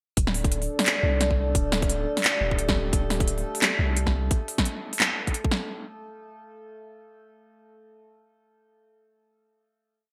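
A dark, heavy half-time drum and bass piece at 174 BPM opens straight into a drop at 0.2 s, with a tight, tape-warm electronic kick and a sparse half-time beat of cracking snare, handclaps and crisp hats bathed in gated reverb, all sitting up front over a deep, mellow 808-style bass of long gliding notes with tube saturation. A moody, nasal analog pad holds sustained detuned chords under subtle chorus and sidechain pumping until both pad and bass stop at 4.3 s, while from 1.4 s an eerie, metallic FM drone holds a high note in chorus and its own reverb. The bright 1980s-style digital production places the whole short piece in a moderate plate-reverb ambience.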